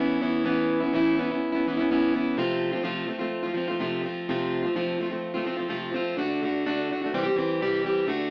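Rock, with a jangly, warm mood, this short excerpt cut from a longer piece moves in a straight four-beat feel. A picked, plugged-in steel-string acoustic guitar plays alone throughout, sitting up front with a concert character, the warm sound of fresh strings and an audible finger squeak. Its chords shift from Aadd9 to F in the opening passage, then move through D and C once a second section arrives at 6.2 seconds. The sound carries a moderate large studio reverb, while the overall tone takes on an AM radio quality. It has the feel of a band playing live together in one room, though only the guitar is heard.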